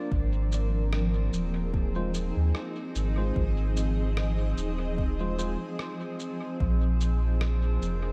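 Peaceful and hazy, this short cut from a longer ambient dub piece drifts along in 4/4 with a gentle swing on the sixteenths, moving from an Ab6 chord to Bb at 6.6 seconds. A granular cloud pad holds sustained, blurred, full-bodied, evolving chords under its own built-in reverb and a subtle chorus, while a glassy texture of drifting overtones sits calmly in the background. A deep, round sine sub bass is the most up-front part, sustained and warm beneath everything else. A clean tine electric piano adds stabs through a dub echo from the background, stopping at 5.6 seconds. An overdriven, layered electronic kick drum with studio reverb runs until 6.8 seconds, while a muffled, pitched-down, tape-toned shaker and rim click, compressed and sampler-like, carry on with studio reverb and dub echo of their own, all under a light reverb.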